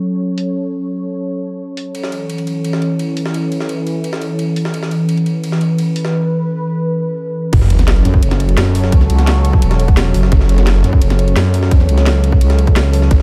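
A snarling, detuned sawtooth bass, distorted and tube-saturated with sidechain pumping, arrives in short bursts from 7.5 seconds, when this dark, mechanical piece of technical drum and bass hits its drop in F# minor at 172 BPM. Alongside it, a thick FM bass growls up front with sustained low notes, while a sub drop sits in the background under the impact. From the start, a resonant, evolving pad holds sustained chords moving from F#m to A and back to F#m, its sawtooth layers treated with chorus, a filter swell and pumping. An electronic kit with a cracking snare and bright hats, both overdriven and low-pass filtered, joins almost at once. A gritty, pitched-up jungle-style break with a high-tuned snare and a tape-coloured ride, re-recorded in a large room, layers on from 1.9 seconds. At the drop a tight, overdriven kick lands up front, and the excerpt sits in a light digital ambience.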